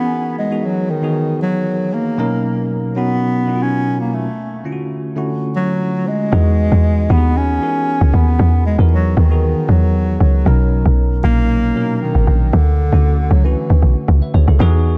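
A mellow bass clarinet sings an up-front, jazz-style solo melody with vibrato and a diffuse ambient delay over bright, bell-like tine electric piano chords moving through Emaj9, Bmaj9 and Dmaj9 in E lydian, before a woody, punchy log drum bass with a fast, decaying attack enters at 6.3 seconds to drive this relaxed 116 BPM amapiano excerpt in a small room with light reverb.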